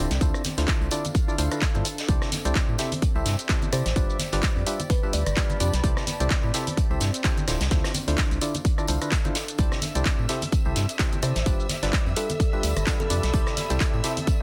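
This dense, heavily limited recording sits in a small room ambience: a joyful, euphoric slice of piano house, cut from a longer piece, with a swung sixteenth-note feel. A layered electronic kick punches up front alongside a tape-warm analog drum machine of handclaps, hi-hat, rim click and shaker, while a vintage brush kit and hard-hand tambourine and congas sit in the background. A dark FM bass with organ-like tone and a mellow, chorused organ stab with tape echo both pump against the kick, cycling through Dm9, C69, G7 and C69. A warbling, nostalgic lo-fi pad pumps softly beneath them, and a woody kalimba with tape echo plucks short phrases at 3.7 seconds and again at 11.2 seconds. From 9.6 seconds a smooth-topped studio violin section adds pumping, bowed sustained chords with vibrato and portamento in the background.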